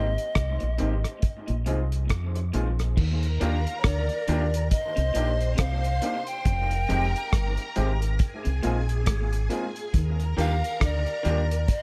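A slow, swung lovers rock reggae groove at 69 BPM in Eb major rides on a cloth-damped, thuddy drum kit with a tight kick, rim clicks, hi-hat and dark crash cymbals, anchored by a deep, round, punchy dub bass sitting up front. A breathy, expressive pan flute with vibrato, chiff and tape echo carries the tender, sweet melody over an intimate concert grand piano with audible action noise. Two slightly broken-up guitars through a small old amp sit in the background, one dark and phased on a low riff and one bright and twangy with lush chorus on stabs, while a swirling vintage string machine enters at 3.0 s with a second line as this excerpt from a longer piece moves from Abmaj7 toward Ebmaj7.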